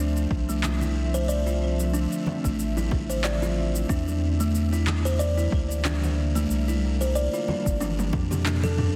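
A buzzing kalimba sits up front, plucking woody, mellow arpeggios through a tape echo in this short organic downtempo passage cut from a longer piece, with an earthy, warm mood in D minor at 92 BPM in 4/4 and a light 16th-note swing. Beneath it, a round sine sub bass holds the low end with sidechain pumping, while an ethereal pad of detuned sawtooth and triangle voices sustains slow-blooming chords, softened by ensemble chorus, its own reverb and a gentle pump. The harmony moves from Dm9 to Em7b5 and then C9sus4. An overdriven deep house kit of handclaps, shaker and toms enters at 0.2 s, joined at 0.3 s by a deep, layered electronic kick, both carrying the character of a large room. Very quiet acoustic congas ring softly underneath, and a drum fill starting at 7.8 s carries the passage to its close, with the kick dropping out at 8.3 s, all within a dense, heavily limited modern master with light reverb.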